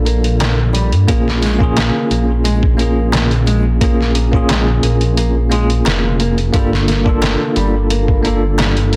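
A dense, heavily limited modern master with light reverb and digital ambience frames this dark, cinematic trip hop fragment at 88 BPM, cut from a longer piece and moving from Gm7 to Bbm7 and back. A rumbling, saturated detuned saw bass sits up front beside a gritty, pitched-down sampler-style drum kit with a thumpy kick and studio reverb, while a crisp metal-shell darbuka stays in the background from 0.4 seconds. Over them, a bell-like tine electric piano carries the accompaniment through tremolo, a low-pass filter and tape echo, and a thumb-plucked flamenco guitar adds warm, acoustic arpeggios with its own tape echo.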